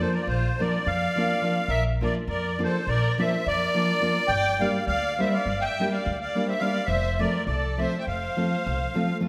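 A reedy, shimmering musette accordion leads this exuberant, wild Balkan wedding-band excerpt in a brisk 9/8 at 208 BPM, with a distant, warm violin bowing an expressive second line full of vibrato and portamento, a full-bodied fingerpicked nylon-string guitar with audible finger squeak, and a woody, dark pizzicato upright bass moving through Bb, Gm and F, all bathed in a wet recital-hall reverb.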